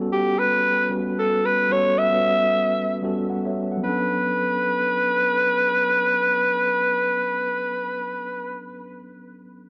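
Soulful and deep, this short amapiano excerpt moves at 113 BPM in 4/4 with a swung sixteenth-note feel, set in B minor and tuned slightly low to A4 = 438 Hz. A mellow tine electric piano carries the accompaniment from the start to 9.7 seconds, its clean tone heard as if through built-in speakers and sitting well beneath the lead. Up front, a growling alto saxophone takes the solo melody from 0.1 seconds, raspy and breathy with a vibrato-laden, pop-style delivery and a touch of analog delay. The harmony rests on an A13 chord before shifting to Bm9 at 3.8 seconds, where a second section begins. The whole has a dry, gritty hardware character with light reverb, giving the horn a vintage edge against the soft keys.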